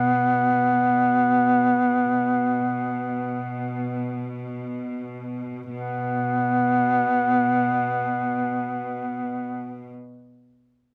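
In free time, this short fragment of a mournful, solemn Caucasian folk lament eases into a slowing pace over its first 5.7 seconds before a new passage begins. A warm duduk carries the folk-style melody up front, its soft attack, vibrato and scooped notes shaded by a slapback echo, while a bright, earthy cello section bows a quiet chamber drone with light vibrato beneath it. The sound is dry and open-air, caught outdoors with little reverb.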